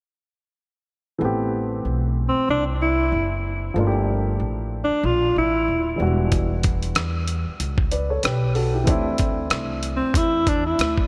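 Jazz-hop at 94 BPM in A dorian, nocturnal and mellow, with a swung 16th feel and a dreamy mix soaked in a huge ambient reverb, cut from a longer piece. A dark, intimate grand piano with audible action noise and a woody, pizzicato upright bass carry the chords Am9, Gm9, Em9 and Dsus2 from 1.2 seconds, while a mellow alto saxophone with vibrato, subtone and scooped notes sings up front through tape echo. A gritty, compressed sampler-style drum kit with a thumpy kick, hi-hat and rim click joins at 6.3 seconds, and the sax returns at 10.0 seconds.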